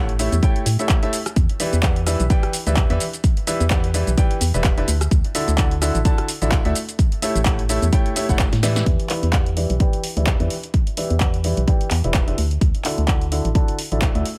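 A swung groove at 128 BPM drives this bittersweet, energetic piano house cut from a longer piece in E dorian, with an up-front, tape-warm layered kick and an analog drum machine of handclaps, hi-hat, rim click, shaker and a punchy snare set in a short room. A hollow, dark, organ-like FM bass with a fast, decaying attack pumps under sidechain compression, while a clear but boxy grand piano with short sustain plays a riff through a low-pass filter, tape echo and sidechain pumping over A7, Em7 and Dadd9 changes. After the opening drop, a drum fill at 8.5 seconds leads into the second section at 8.9 seconds, all wrapped in a digital ambience.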